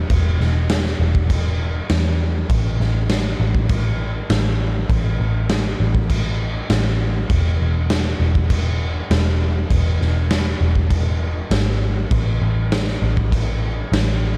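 The raw garage drum kit sits up front with a punchy kick, a medium-tuned snare and crash cymbal, its saturated, gritty sound carrying a rolled-off top and a bright stone-room ambience. This is a short cut from a longer rock piece in the shoegaze and dream pop vein, played at 100 BPM in a straight 4/4 feel in E major, with a tuning of A4 = 438 Hz. Alongside the drums, a vintage muted picked electric bass holds the low end from E1 to E2, its foam-muted, amped tone dark and round. The drums enter at 0.1 seconds and play until 14.1 seconds, while the bass runs the full 14.4 seconds as a single section. A light reverb lends the whole a dreamy, blissful mood.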